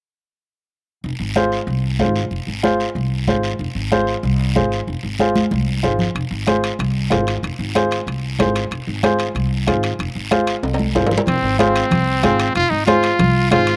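A bright, punchy trumpet with vibrato enters up front at 11.3 seconds, playing a second line with slapback echo in this passionate, driving cumbia excerpt in F minor at 188 BPM. Beneath it, a woody, slightly detuned upright piano with short sustain plays on Fm over a thumpy pizzicato upright bass, thick-skinned congas and a raspy guiro. Ringing metal-shell timbales join at 6.2 seconds with their own slapback echo, a drum fill from 10.6 seconds leads into the trumpet's entry, and the outdoor recording carries little reverb.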